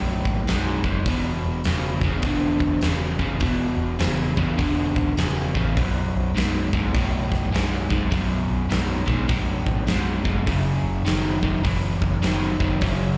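A crunchy, overdriven electric guitar riff opens this raunchy, driving blues rock and southern rock excerpt in a power-trio setting, double-tracked and up front alongside a dark, round, foam-muted fingered bass, moving through B5, E5 and F#5 power chords at 102 BPM in 4/4 with a swung eighth-note feel. An arena-sized acoustic drum kit joins at 0.3 seconds, its hi-hat, fat snare and punchy kick placed up front. The sound carries the small-room ambience and club reverb of a live gig heard through the venue's PA.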